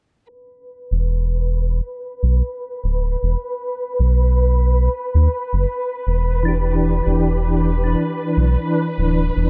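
A short excerpt in a small room with light reverb and a low-pass filter sweeping across its full length opens a brooding, smoky trip hop groove at 78 BPM in E minor, swung on the sixteenths. A lush, softly bowed violin section holds sustained chords from 0.3 seconds, and a deep, round analog bass sits up front from 0.9 seconds. At 6.4 seconds a mellow, percussive tonewheel organ joins on an Em7 chord, coloured by chorus vibrato, slow rotary speaker, tremolo, tape echo and gritty 12-bit sampler texture.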